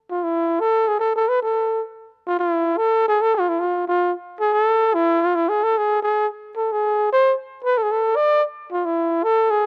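Bittersweet yet festive, this short klezmer excerpt in a straight 2/4 feel features a lone cornet carrying the whole passage. The breathy cornet enters at 0.1 seconds and plays solo until the clip ends at 9.7 seconds, staying up front in the mix. Its tone is mellow and whispered, shaped by a soft attack, vibrato and scooped notes that lend a jazz-inflected, intimate character to the line. A slapback echo trails the cornet, and light reverb surrounds it in an outdoor setting that carries little sense of a room. The material is built from a repeated opening section, heard first briefly and then again at greater length, and the clip is cut from a longer piece.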